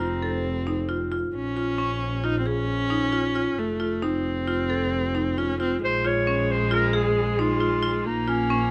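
Urgent and hypnotic, this short excerpt of contemporary chamber music in Bb minor moves in an uneven 5/4 at 134 BPM. A woody marimba struck with hard mallets spins arpeggios, a rich, focused bowed viola carries a smooth second line, and a bowed double bass sings with vibrato and portamento underneath. Meanwhile, the harmony alternates between F7 and Bbm7 chords, and a bright, jazz-style clarinet with scooped notes touches in at the start and returns with its melody at 5.8 seconds over Bbm7. Everything is captured close and detailed in a light reverb.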